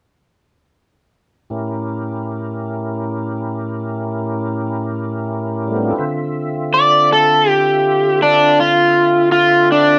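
A smoky, mournful blues fragment in a slow 12/8 with a straight feel, played live by a band in one room with a moderate studio reverb. A fat, lightly overdriven tonewheel organ holds sustained chords up front from 1.5 seconds, its slow rotary speaker and chorus vibrato colouring the harmony as it moves from A7b9 to Dm7. At 6.7 seconds a bright, overdriven electric slide guitar steps forward with the melody, fingered with a slide, and carries on with the organ to the close at 10.0 seconds.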